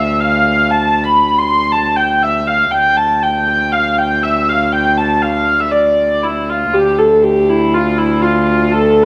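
This medieval dance in a steady, straight duple metre feels driving and mysterious, a short passage cut from a longer piece. A dark, reedy hurdy-gurdy carries the melody from the start, sitting up front with a smooth top and ranging from E4 to C6. Beneath it, a viola da gamba holds a low drone on D2 throughout, its gut-string tone warm and boxy, with light vibrato and an airy, ringing bow in period style. The gamba sits well beneath the melody, and it shares a nasal colour with the wheel-bowed lead. A wet recital hall reverb gives both instruments a lingering space, and the same section begins again at 6.7 seconds before the cut ends just after 9 seconds.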